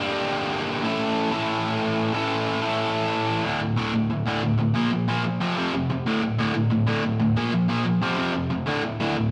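A straight, driving four-beat pulse pushes this angry, urgent punk fragment along at a furious clip, cut from a longer piece. A single overdriven electric guitar carries everything, picked and double-tracked so it sits thick and up front, its tone gritty yet warm. It opens on a tense move from G minor to A, then at 3.4 seconds settles into a cycle of D, B-flat and F power chords that repeats until the cut at 9.3 seconds. The part spans from a low growl up into a biting upper register. The sound is a rough rehearsal-room take with saturated edges, wrapped in the echo of a stone room that keeps the blunt riffing reverberating between hits.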